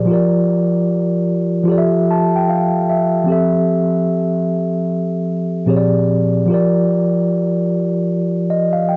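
A mellow tine electric piano opens this short hip hop excerpt alone, playing from the first moment to its close at 9.0 seconds, ranging from Bb2 up to A5. The mood is nostalgic and cosy, with a laid-back swung feel in four. Its tone is clean and up front, colored by cassette tape and a low-pass filter that soften its edges, as if heard through built-in speakers. The harmony drifts through lush extended chords, Bb6/F, Fmaj9, Bb13 and F13sus4, and a short piano fill arrives between 1.7 and 3.3 seconds before the opening idea returns. Moderate studio reverb and a dark production give the whole a hazy, intimate glow, and the passage is cut from a longer piece.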